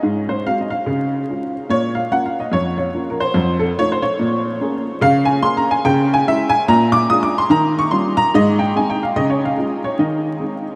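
Swinging and exuberant, this short stride piano fragment at 145 BPM features a lone upright piano, woody, boxy and slightly detuned with audible action noise, sitting up front yet soaked in a huge, dreamy ambient reverb with vinyl crackle as it settles into Ab major from 5.0 s through chords such as Bbm7, Eb9 and Ab/Eb.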